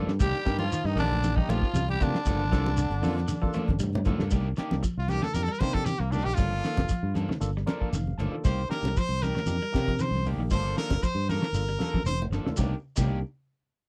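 A straight 4/4 afrobeat groove, hypnotic and driving, rides on a cloth-damped, thuddy drum kit with a fat snare and dark cymbals, an up-front fingered electric bass, low-tuned congas and a grainy shekere, while a barky tine electric piano, a very quiet clean electric guitar playing arpeggios and a twangy, slightly broken-up electric guitar adding stabs circle a vamp of Cm9 and Gm9. A raspy tenor saxophone carries the opening melody with a distant, breathy alto saxophone and a bright, loose trombone section behind it until 3.8 seconds, and then a brilliant, forceful trumpet solos from 5.0 seconds, framed by drum fills and a brief electric piano fill. The sound is a dry, close 1970s-style studio recording, cut from a longer piece.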